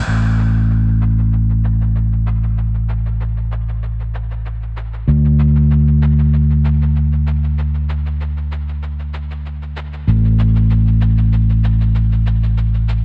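From the first moment at 0.1 seconds, a fingered electric bass and a cabasa play together in this blissful sunset chillout excerpt in 4/4, carried by a gentle swing on the sixteenths. The bass sits up front, amped and growly, with a warm electric tone that stays low in its register. Far beneath it, the cabasa has a sampler-style, compressed character, gritty and tape-touched, its brightness softened by a low-pass filter. Both parts run together through the whole passage until 13.0 seconds. The room is dry, with little reverb, which keeps the bass close and present against the muted shimmer of the percussion.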